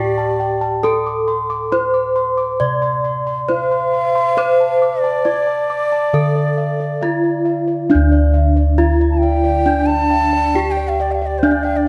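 A straight, even 4/4 pulse carries this ceremonial, serene fragment of Javanese gamelan in slendro tuning, where a bronze metallophone struck with a wooden mallet leads the melody up front, its paired tuning producing ringing, shimmering beats. A bright, reedy bansuri with a straight tone and soft attack traces a second line, while one set of bossed gongs plays round, mellow arpeggios under padded beaters and another supplies a beating bronze bass. At 7.9 s a second metallophone joins in the background with soft arpeggios from padded disc mallets, all captured by close, detailed microphones in light reverb.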